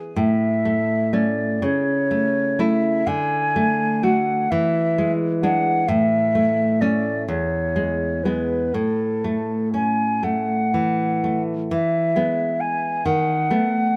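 Romantic duo for flute and classical guitar, lyrical and warm in a rubato 6/8 with uneven beats: a fingerpicked nylon-string guitar with a deep classical tone and audible finger squeak accompanies from the opening, while an airy, mellow concert flute with a soft attack and straight tone carries the melody from 0.2 seconds, the pair set in light reverb until this passage from a longer piece breaks off at 14.0 seconds.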